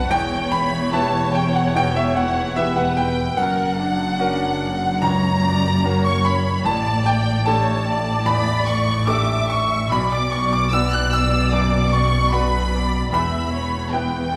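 A wet scoring-stage reverb with a 1.6-second decay wraps this short cinematic string-and-piano passage, cut from a longer piece, in a sorrowful, bittersweet B minor at a rubato 74 BPM in 4/4. A rich, focused violin section carries the melody with vibrato, shadowed in the background by a second violin section with a smooth top that plays its own line in the same high register. A bright, brilliant concert grand piano with deep bass and short sustain provides accompaniment across a broad span, joined by an even, smooth viola section in the middle. Underneath, an expressive cello section and a dark, woody double bass section with light vibrato anchor the low end together. The harmony moves from Em through F# and A7sus4 to Bm, returning to Em at 13.1 seconds, with all six parts playing throughout the 14.4 seconds.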